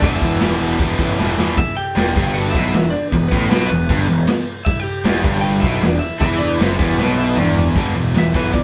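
A rough, gritty live-room sound with moderate reverb frames this urgent punk rock excerpt, cut from a longer piece, with the whole band playing throughout. An up-front, boomy garage drum kit with dark cymbals and a saturated, rolled-off top drives the straight 4/4 pulse and fires off fills at 1.2 and 7.0 seconds, while a tight distorted guitar plays the low picked riff alongside two very quiet riff guitars: a bright cranked stack and a double-tracked, biting overdriven one. Beneath them a growly fuzz picked electric bass sits in the background, and a dark, slightly broken-up, compressed lead guitar carries the melody on top.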